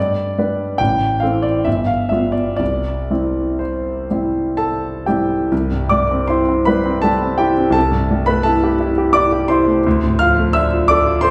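Classical romantic nocturne for solo piano, mournful and wistful, unfolding in a flexible rubato triple metre in this brief fragment cut from a longer piece. The concert grand sounds intimate and natural, with deep bass reaching down to G1, audible action noise and an up-front presence. It sits within a wet recital hall reverb that places the listener further back in the room, as the harmony moves from G through Am and G7 to C before settling into Am7/C at 5.5 seconds and Dm7 at 9.9 seconds.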